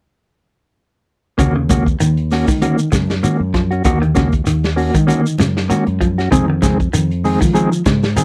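Afrobeat in Eb dorian at 97 BPM, this driving, funky excerpt swings its sixteenths lightly over a 4/4 groove, with every part entering together at 1.4 seconds. An electric guitar at the edge of break-up plays dark, picked arpeggios in a narrow low register, while a second, mellow electric guitar sits up front with clean, fingered stabs coloured by tremolo. A fingered electric bass adds a round, amped bottom, and a vintage drum kit with a tight kick, medium-tuned snare and hi-hat sounds muffled and lo-fi, its top rolled off in a small room. Grainy shekere sits close and dry, and high-tuned congas struck with hard hands ring bright but very quiet, set back in a large room. The harmony rests on Ebm7 before moving to Fm7 at 6.3 seconds, all captured in a dry, close 1970s-style studio sound with little reverb.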